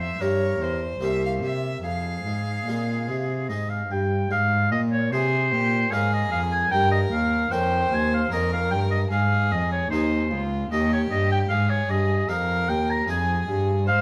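An up-front oboe with a clear, lightly vibrant tone carries the melody through this grave, introspective baroque-style sonata movement in 3/4 at 75 BPM, moving from F minor to Ab major at 4.3 s, with a rich, smooth violin on the second line, an airy, brilliant harpsichord accompaniment and an expressive cello bass with soft attacks and portamento, all heard in a detailed recital-hall sound cut from a longer piece.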